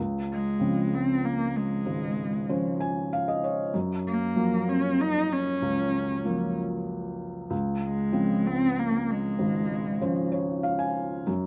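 Captured in the open air with a light touch of reverb, this short excerpt of an acoustic folk-pop ballad in 3/4 feels heartfelt and hopeful. A felt-muted upright piano sits up front with a mellow, intimate, vintage tone and audible action noise, carrying the accompaniment over Dbmaj7 and Gbmaj7 chords until 11.5 seconds. A single bowed cello, equally close, enters at 0.3 seconds with a warm, expressive melody full of vibrato and portamento, and finishes at 10.3 seconds.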